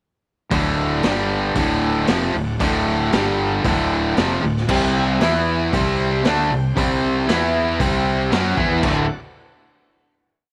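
An up-front, cranked stack guitar drives this short, sunny and confident classic rock piece with an overdriven, picked power-chord riff. Two more overdriven guitars sit in the background playing the same kind of riff: a semi-hollow guitar with a hollow-body tone and a double-tracked raw garage guitar. A fuzz-laden, growly fingered bass, direct and amped, doubles the guitar riff with a syncopated line. A gritty, saturated garage drum kit from a small room, with a boomy kick, medium-tuned snare and rolled-off top, lays down a big rock groove of crash, hi-hat, kick and snare in a straight 4/4. Very quietly underneath, a bright, shouting tonewheel organ, lightly overdriven through a slow rotary speaker, holds chords with swells and changing inversions. The dry sound carries the riff until 8.8 seconds, when the band lands on a final D chord that rings out to 10.5 seconds.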